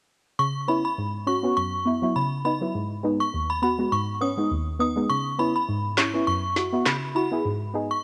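A swung 102 BPM dancehall groove in 4/4 gives this sultry, bouncy excerpt its lilt, as a dark, soft chord stab with a chorus-tinged filter pluck cycles through C#m7, F#7sus4 and G#m beneath an inharmonic, ringing FM synth chime melody coloured by ensemble chorus, cassette tape and analog delay, while a gritty electronic snare drum with handclaps and rim click enters only from 6.0 to 7.0 seconds, all set in light reverb with the lo-fi character of a home cassette recording.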